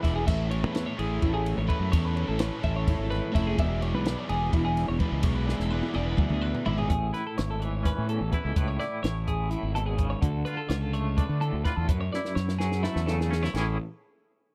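From the first moment, a twelve-string electric guitar plays clean, compressed arpeggios over a double-tracked, crunchy overdriven guitar riff. Beneath them sit a round, fuzzed fingered electric bass placed up front and a compact cocktail drum kit with a punchy kick, high-tuned snare and dark cymbals. This section of a longer math rock and midwest emo piece moves at 253 BPM in eighths, in a straight 7/8 in A major, and its mood is wistful yet bright, with the chords shifting from Amaj9 to E7 and a drum fill closing each half. At 6.9 seconds the overdriven riff drops out, and a scooped, twangy electric guitar with tremolo takes over the accompaniment alongside the twelve-string. The harmony then passes through Amaj7, Dm and F#m7 before settling on Amaj7 at 13.5 seconds. The sound is dry and close, like a 1970s studio recording with little reverb.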